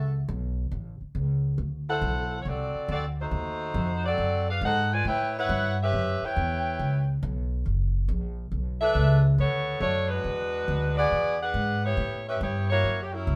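A tight, up-front saxophone section carries the melody with light vibrato, a soft attack and a smooth top over a woody, thumpy pizzicato upright bass with gut strings in this swinging, energetic big band jazz passage in A major at 139 BPM, the band playing live together in one room with moderate studio reverb for the full 13.4 seconds.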